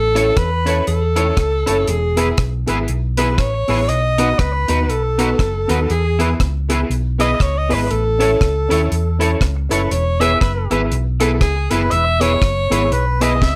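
Swung eighths in 4/4 drive this cheerful, joyful ska fragment, set by a dry, up-front reggae drum kit with a tight kick, a high-tuned snare, rim clicks and hi-hat, alongside a round, dark, hollow-body electric bass played with the fingers. A twangy, slightly broken-up picked guitar with analog chorus and slapback echo fills in the accompaniment, while a mellow, woody, slightly detuned upright piano adds boxy stabs with long sustain and its own slapback. Over chords moving through A, E and B, a clear alto saxophone takes an up-front, pop-style solo full of vibrato and scooped notes, touched by slapback echo, all in a moderate studio reverb.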